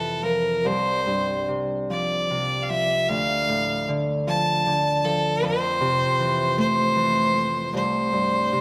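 A moderate concert hall reverb surrounds this brief passage, cut from a longer Celtic slow air, giving both up-front instruments a spacious, lingering tail. In 6/8 at a rubato 51 beats per minute in C major, the mood is wistful and pastoral. A single bowed fiddle carries the melody between A4 and A5, its clear, intense tone shaded by light vibrato and a smooth top. Beneath it, a fingerpicked Celtic harp supplies warm, ringing acoustic accompaniment in the low register, from C2 to C4, and both parts sound together from 0.0 to 8.6 seconds. The harmony moves from Fmaj7 through Csus4, Dm and back to Fmaj7 before settling on C5 at 7.7 seconds.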